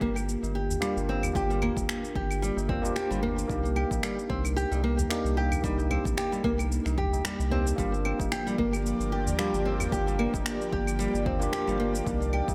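A dreamy, reverb-soaked mix opens this meditative organic downtempo excerpt in G minor at 112 BPM with a light 16th-note swing, where a clean tine electric piano with chorus, pumping and delay accompanies an up-front, woody fingerpicked nylon-string guitar spinning arpeggios over a round sub bass and a punchy overdriven kick in the background, joined by overdriven electronic claves, shaker and finger snaps plus a very quiet, ringing high-tuned tabla, before an airy, breathy detuned pad with phaser enters at 7.8 seconds as the chords, having moved from Gm7 to Cm9, return to Gm7.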